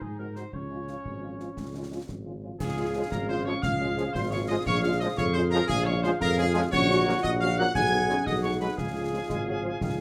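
A mellow, roomy tuba sits up front with a light vibrato, anchoring this rousing, festive military-style march for wind band in 6/8 at 116 BPM. It begins in Db major and shifts to F# major at 6.7 s. Punchy, tight trumpets carry the melody over a woodwind section with a warm, classical tone, while dark, distant French horns, a very quiet close-miked euphonium and concert bass drum, snare and dark clash cymbals fill in the band. A pure, expressive piccolo enters at 2.6 s, and soft-edged trombones add sustained chords from 3.0 s, all in a moderate large-studio reverb that rounds out this excerpt.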